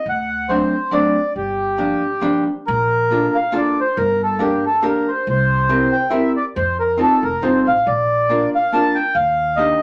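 A bittersweet, whirling musette waltz in a rubato swing, cut from a longer piece, where a reedy, airy accordion with slow beating carries the melody up front, a clean, dark hollow-body archtop guitar adds picked accompaniment from 0.5 seconds, and a woody pizzicato upright bass sits beneath, all in a wet club reverb as the chords turn from D7 and Gm7 toward Bbmaj7 and on through C7 and F7 to Ebmaj7.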